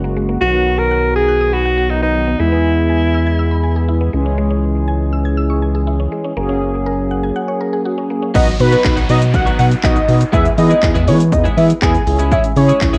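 Moments into this euphoric, summery dance-pop excerpt, a bright, forceful alto saxophone with scooped notes and vibrato carries a brief melody over dark, brassy synth chords, woody mallet-like synth arpeggios with tape echo, and a deep, pumping analog bass. At 8.3 seconds the pluck stops and the drop arrives: a punchy house drum kit with kick, handclaps, hi-hat, shaker and crash enters alongside a clean, compressed twelve-string electric guitar riff, a fat, detuned analog lead melody and a downlifter in the background. Cassette tape colours most of the parts, and light reverb gives the home recording a soft sense of space.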